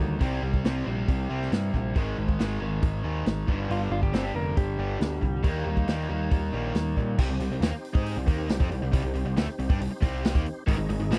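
A punchy, up-front vintage drum kit with a rolled-off top drives this swaggering, brooding classic rock excerpt, alongside a growling, amped electric bass and two bright, picked overdriven guitar riffs, one of them a raw garage guitar with spring reverb, while a fingerpicked electric slide guitar adds a brief second line at 3.7 seconds and a full tonewheel organ with slow rotary speaker, chorus vibrato and key click holds sustained chords in the background from 7.2 seconds, where the garage guitar drops out until 10.7 seconds, captured in a dry, close 1970s-style studio sound.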